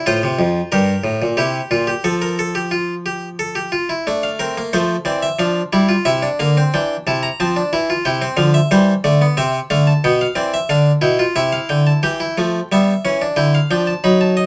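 Close, detailed microphones and light reverb frame a bright, airy harpsichord, plucked on a single set of strings in the Flemish style and placed up front, playing a solemn yet driving baroque-style three-part fugue in 3/4 across its F2 to B5 range, in a short cut from a longer piece that returns to its opening material at 12.0 seconds.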